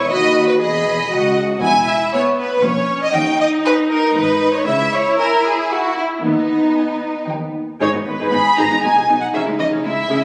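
A full string orchestra enters at once in a quick, dramatic classical-period movement in triple metre: the first violins carry a smooth, lush melody up front, the second violins trace a focused second line, and the violas fill in the accompaniment. Beneath them, a dark, expressive cello section and a rich double bass section share the bass, every section bowed with vibrato. The harmony moves through chords such as D#7, G#m and C#m, and the urgent opening section gives way to a new one at 7.8 seconds. Captured on a phone in the room, the recording is compressed and steeped in club and scoring-stage reverb, and this fragment is cut from a longer piece.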